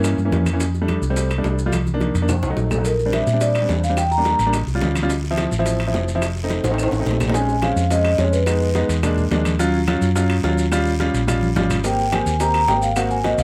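A driving, straight 4/4 pulse at 214 BPM anchors this sophisticated Afro-Cuban jazz excerpt, with bright, low-tuned congas, round bongos, ringing metal-shell timbales, woody claves, grainy maracas and, from 2.8 s, a raspy guiro, all set around short drum fills. An up-front, dark hollow-body electric bass and an intimate concert grand piano with audible action noise carry the rich extended harmony, which settles into Bb minor at 7.3 s. Above them, a metallic vibraphone played with medium mallets and its motor off states brief melodic phrases bathed in plate reverb, the last one arriving at 11.9 s.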